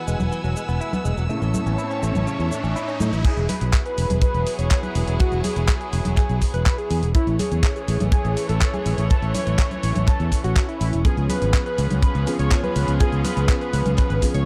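A straight four-four groove drives this playful, sunny italo disco passage, cut from a longer piece, anchored by a warm, up-front fingered electric bass with tube saturation and a gritty, compressed sampler-style kit of cabasa, congas, handclaps, hi-hat and crash cymbal. Over rich, bowed chamber strings carrying vintage 12-bit sampler grit, a twangy clean electric guitar plays arpeggios with tape echo, a dark, mellow baby grand adds stabs and an electronic riser sits in the background, all moving between Eadd9 and A. At 3.2 seconds a tight, polished kick drum arrives with a thick, detuned sawtooth unison lead carrying the melody with subtle chorus, vibrato and tape echo; the piano returns at 11.1 seconds over a C#7 chord, all in a dry, close 1970s-style studio sound.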